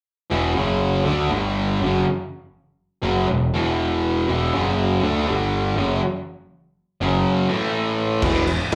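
Heard through a club PA with light room reverb, this menacing, raw garage rock fragment from a longer piece opens at 0.3 s with a bright, double-tracked fuzz guitar riff, distorted and compressed with a slapback echo, cycling through E5, F#5, D5 and G5 before reaching A5. Beneath it, a growling picked electric bass, overdriven and warm, plays in a low register in a straight 4/4 feel. Only at 8.2 s does a gritty, saturated drum kit burst in up front with punchy kick, snare, dark crash and ride cymbals in a stony room sound.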